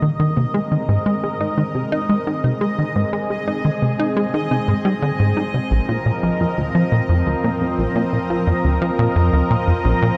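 A straight 4/4 pulse carries this luminous, expansive slice of sequencer-driven ambient space music, where a punchy, funky analog bass riff with analog delay sits up front beneath a thick, warbling unison pad whose detuned, sustained chords fade in across the full 10.2 seconds, moving from Abadd9 to Bbsus2 at 5.7 seconds, while a bright, resonant bubbling texture of random filter steps floats high above, the piece set in a vast, echoing cathedral reverb.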